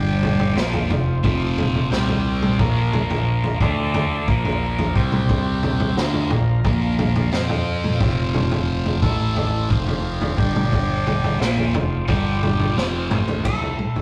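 A straight 4/4 pulse at 88 BPM drives this hazy, hypnotic psychedelic rock fragment, cut from a longer piece and captured as a rough rehearsal-room recording with a moderate booth ambience. A vintage acoustic drum kit sits up front with a punchy kick, a medium-tuned snare, toms and dark crash cymbals under a rolled-off top. A thick, double-tracked fuzz guitar plays the riff with bright distortion and phaser while an overdriven combo organ holds buzzy sustained chords with light vibrato, both moving through G5, F5, C5 and Bb5 shapes. A growling picked electric bass, round and overdriven, stays in the background low in the mix. After a drum fill from 12.8 s, the organ and guitar drop out at 13.4 s and a clean, twangy lap steel enters with a compressed slide note on A4.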